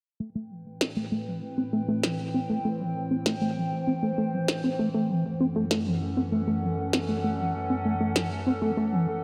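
Eerie and melancholic, this short IDM excerpt at 98 BPM in A dorian pairs a rubbery, resonant acid bass arpeggio, saturated and dark with subtle chorus and delay, with a warbling, detuned tape-like pad holding sustained Am7 then F#m7 chords through chorus, phaser and a filter sweep, while a tiny electronic snare sits up front in dub echo, all bathed in a lush hall reverb.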